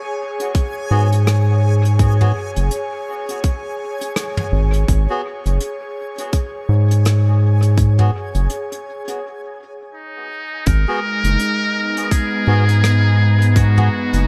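Hazy and spacious, this ambient dub fragment drifts on a lightly swung groove in a small-room ambience. An airy, breathy pad holds sustained chords with chorus and a gritty vintage-sampler edge, while a reversed, detuned swelling texture glimmers in the background until 9.2 seconds. A round, deep analog bass with tube saturation sits up front beside a tight, tape-toned electronic kick, and a soft brush kit adds hi-hat, rim clicks and toms through dub echo. Reedy, nasal melodica stabs float through the same echo. During a brief break, a buzzy, thin trumpet with a metal mute enters at 9.9 seconds to carry the melody with vibrato, trailing dub echo as the harmony darkens into a minor chord.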